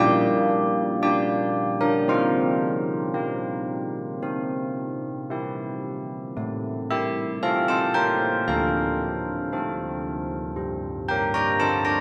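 At a slow, straight 57 BPM in 4/4, this classical tune for church bells moves with a serene yet festive calm. A solo carillon plays throughout the 12-second excerpt, its bronze, ringing tone dark and smooth with a minor-third overtone and the mark of a worn iron clapper, sitting up front in a wet concert hall reverb. The harmony passes from Gm/Bb through Csus4 and C to Am, Dm7 and finally Gm at 10.6 seconds, a fragment cut from a longer piece.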